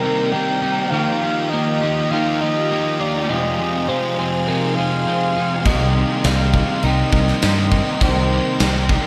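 Dreamy and brooding, this shoegaze and dream pop rock piece in C minor moves at 102 BPM, with a breathy, flute-like synth lead carrying the melody over an icy, crystalline pad and a very quiet, clean twelve-string electric guitar playing arpeggios through Cm7, Ebadd9 and Fm7. A crunchy overdriven guitar with reverse reverb and a thick fuzz guitar, up front and drenched in distortion and analog chorus, drive the riffs. At 5.7 seconds a bright fingered electric bass and a punchy gated 80s drum kit with bright cymbals arrive, all bathed in a huge ambient reverb.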